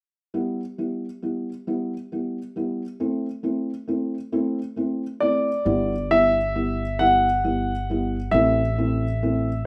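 A clear, polished concert grand piano carries the melody from 5.2 s with digital delay and long sustain over a soft, dark felt-muted upright piano accompaniment with audible action noise, joined at 5.7 s by a woody pizzicato upright bass, in a heartfelt, swaying six-eight pop ballad in G major at 45 BPM that moves between G6 and Am chords inside a wet studio reverb and a rough home demo mix.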